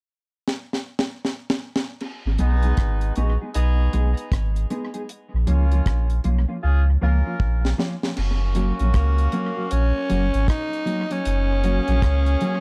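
A raspy, gritty tenor saxophone steps up front at 9.0 seconds with scooped notes and light vibrato over this laid-back, serious roots reggae excerpt at 78 BPM, where a dry, deep drum kit with a high-tuned snare and analog delay opens with a fill, a round, soft dub sub bass sits up front, a mellow, clean electric guitar with analog chorus and tape echo plays accompaniment, and a distant, roomy horn section adds a second line through a dark production moving from G#m to A#m to F#.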